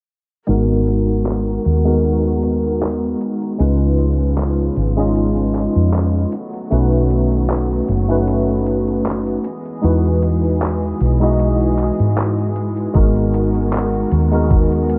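A barky tine electric piano with analog chorus and tape echo opens this hazy, melancholic vaporwave excerpt at 77 BPM in G# minor, joined from the start by a round, woody fretless bass with tube saturation and chorus, a distant, biting string section holding sustained chords, and a detuned 8-bit drum machine ticking out handclaps and hi-hat with a gentle 16th-note swing. The chords drift from G#m9 through C#7, B7 and Emaj7 before returning to G#m9 at 13.0 s, where a thumpy, up-front electronic kick drum briefly enters until 14.7 s. A filter sweep runs throughout the whole excerpt, wrapped in light reverb and a low-pass filter that soften the mix into a dusty blur.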